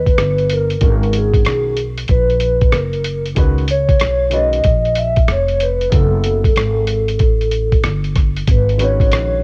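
Nocturnal and mellow, this short jazz-hop cut from a longer hip hop piece moves at 94 BPM in 4/4 with a swung sixteenth-note feel. A vibraphone played with soft mallets carries the melody up front, its metallic, ringing tone close-miked and dry, with a medium motor vibrato and a cassette-tape softness. Beneath it, a woody pizzicato upright bass with steel strings sits up front with a touch of transformer saturation, while a compressed, pitched-down, sampler-style kit of hi-hat, rim click and thumpy kick adds muffled, tape-warm 12-bit grit. A dark, smooth upright piano enters at 0.8 seconds, lower in the mix, with a vintage character that fills out the harmony. The chords move from G#m9 to C#sus2 and F#m9 before returning to G#m9 at 8.5 seconds, all set in a small-room reverb with the hazy feel of a home cassette recording.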